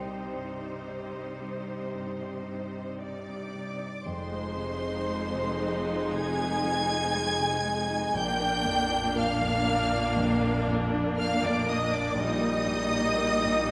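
Moving and longing, this cinematic orchestral film score excerpt unfolds in F dorian at a slow, rubato 55-61 BPM in 4/4, as bowed strings with vibrato (a focused violin section on a second line, violas, and a lush cello section in the background on bass) blend with a warm, deep-bassed concert grand piano from the start, before a close, rich high violin melody enters at 3.0 s and a clear double bass section joins at 4.1 s, all set in the generous reverb of a scoring stage over chords moving from Cm through Fm7 and Bb to Eb/Bb.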